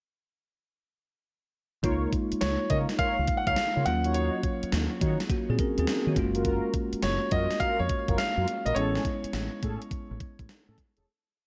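Flirty and upbeat, this hard-swung new jack swing R&B piece sets short syncopated stabs of detuned, chorused synth brass against held chords from a bell-like tine electric piano, a round, punchy fingered electric bass line with muted ghost notes and a thumpy, up-front 80s digital drum machine with a gated-reverb snare, while an intimate grand piano, its action noise audible, carries a clear motif-based melody from 2.4 seconds in a dry room before the fade-out that begins at 8.8 seconds.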